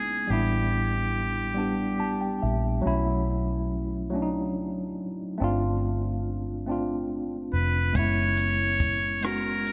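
A slow six-eight R&B groove at 47 beats per minute sways with a straight feel, setting an intimate, sensual mood in this fragment cut from a longer piece. A trumpet with a metal mute carries the melody up front, its thin, buzzy, breathy tone and soft attack giving it a whispered, vintage jazz character; it returns for a second phrase at 7.5 seconds. Beneath it, a worn, slightly out-of-tune tine electric piano sounds through its built-in speakers, accompanying on suspended ninth chords that move from A9sus4 to B9sus4, G9sus4 and F#9sus4, and it adds a fill at 1.6 seconds. A vintage fingered electric bass, foam-muted and dark, holds down the low end with a round, punchy tone. A compact cocktail drum kit arrives only at 8.0 seconds, its dry hi-hat, rim click and punchy kick framed by gated reverb. A lush hall reverb and bright 1980s-style digital production give the whole a glossy sheen.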